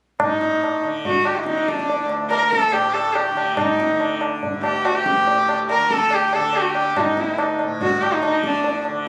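In a straight 4/4 pulse, this devotional, serene Hindustani classical excerpt sets a low-tuned, ringing tabla beneath a nasal, earthy sarangi melody that glides with portamento and light vibrato, its airy bow and sympathetic strings placed close and up front in plate reverb. A bright, buzzing tanpura drone shimmers softly underneath, with all three parts entering at 0.2 seconds and the sarangi falling away at 8.8 seconds. Captured on a phone in a moderately reverberant room, the compressed sound carries a club ambience.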